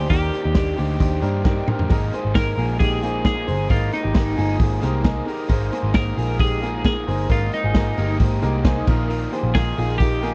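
Jangly indie pop with a bright, youthful mood, built around a clean, twangy twelve-string electric guitar melody over a foam-muted, round picked bass and a raw garage drum kit with a punchy kick and gritty, saturated tone, which plays a fill at 1.5 seconds. A slightly broken-up, lo-fi electric guitar plays arpeggios, while an overdriven crunchy guitar and a woody upright piano sit in the background, joined at 1.9 seconds by a swirling, nasal analog pad with phaser and chorus. The chords move from Ebmaj7 to Absus2 and then Bbsus4, and the dry, close 1970s-style studio sound keeps the drums and bass up front.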